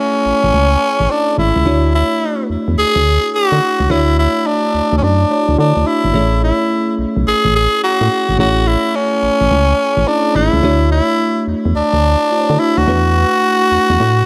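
A swung sixteenth-note groove drives this upbeat, flirty slice of new jack swing R&B, cut from a longer piece. A raspy, growling tenor saxophone carries the melody up front with light vibrato, while a bell-like tine electric piano colored by phaser supplies chords moving through Amaj7, Dmaj9 and E9sus4 and adds a fill at 14.0 seconds. Beneath them, a punchy, round FM bass with a dark, fast-attack tone enters at 0.3 seconds, all set in a small room with light reverb.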